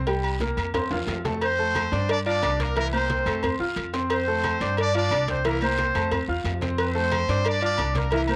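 A punchy, tight horn section carries the melody from 1.4 s, its brilliant pop-style lines colored by cassette tape, in this joyful, danceable salsa fragment cut from a longer piece. A bright grand piano accompanies over chords moving among F, Gm7 and C7, while a woody, thumpy pizzicato upright bass sits up front; in the background, ringing agogo bells and timbales, low-tuned congas, a high-tuned cowbell and a raspy guiro fill out the percussion, with a drum fill from 0.7 s leading in the horns. Light reverb and small-room ambience give it the intimate feel of a home recording on cassette.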